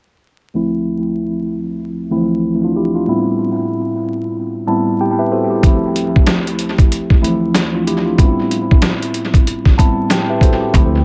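Swung sixteenths give this dark, tough boom-bap hip-hop fragment its loping sway, as a mellow tine electric piano opens alone at 0.5 s, moving between Dm9 and Am9 under a filter sweep and tape echo before a short fill. The gritty, pitched-down sampler drum kit arrives up front at 5.6 s with a thumpy kick, a medium-tuned snare and hi-hat, and a woody pizzicato upright bass slips in only at 10.7 s. Spring reverb, heavy echo and vinyl crackle lend the mix a dusty, smoky haze.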